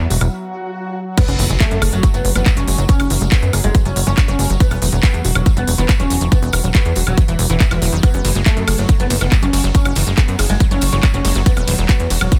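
Psychedelic trance with an intense, alien mood, this excerpt opens on a brief break in which a plucky analog bass, a background unison pluck riff run through delay and sidechain pumping, a drum and bass drum kit with crisp hats, handclaps, ride, crash and woodblock, and a close, jingly tambourine are joined by a background swell and impact beginning at 0.5 seconds. At 1.2 seconds the drop lands: a tight, up-front electronic kick drum enters and the oud takes the melody, its woody, plectrum-plucked double strings colored by phaser, dub echo and sidechain pumping. The punchy, funky bass sits prominently with a fast filter-plucked attack, while the lush, detuned unison pluck carries a noise layer and a moving notch beneath. A very quiet evolving wavetable pad holds sustained chords throughout, morphing and warbling with chorus and a long release. The harmony moves between E5 and F#5 over a dense, heavily limited modern master with digital ambience.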